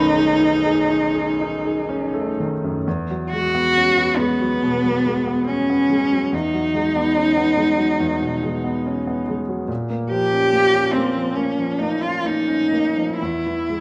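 The rhythm moves freely in 4/4, with uneven beats and a rubato feel that lets each phrase breathe. This is a luminous, pastoral classical duo in an impressionist style for cello and baby grand piano, cut from a longer piece. A single bowed cello carries the melody in a mid register from B3 to G4, sitting up front with an expressive, warm tone shaped by vibrato and portamento. The warm baby grand supplies the accompaniment across a broad range from B1 to B5, with a natural tone and long sustain. A short opening phrase gives way to a new section at 2.9 s, and a darker minor colour arrives at 9.7 s before the passage settles home at 13.2 s. Close, detailed microphones capture both players inside a moderate scoring-stage reverb that adds a soft halo of space.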